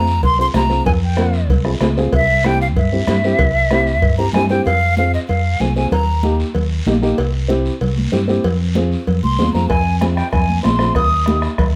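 A light reverb gives this short cumbia cut from a longer piece a sense of space, with the hollow, airy concert flute and the round, amped fingered electric bass both sitting up front. At 190 BPM in a straight 4/4, the music is danceable and passionate, settling into F minor from 4.7 seconds as the chords move through F minor, E-flat and C. The flute carries the melody with vibrato and a crisp attack, drops out after 6.4 seconds, then returns at 9.2 seconds. A dark, woody upright piano, mellow and slightly detuned, supplies accompaniment underneath throughout. The percussion brings bright, high-tuned congas in the background, a raspy guiro heard from a distance, ringing metal cowbell and timbales, and a soft-beaten bombo that sits out between 4.5 and 9.7 seconds.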